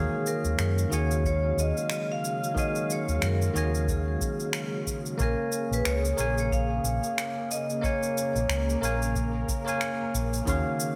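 The round, dark fingered electric bass sits up front in this smooth, relaxed sunset chillout excerpt at 91 BPM with a swung sixteenth feel, alongside a bell-like tine electric piano and a ringing, metallic vibraphone melody, both carrying delay, over Ebm11 and Bbm7 chords. A silky string machine with phaser and ensemble chorus holds soft sustained chords from 0.5 seconds, while a brushed jazz kit with cabasa, finger snaps and hi-hat and a deep electronic kick keep time, and a very quiet, shimmering steel pan touches Db4 at 10.5 seconds. The bright 1980s-style digital production sits in a lush hall reverb with a small room ambience.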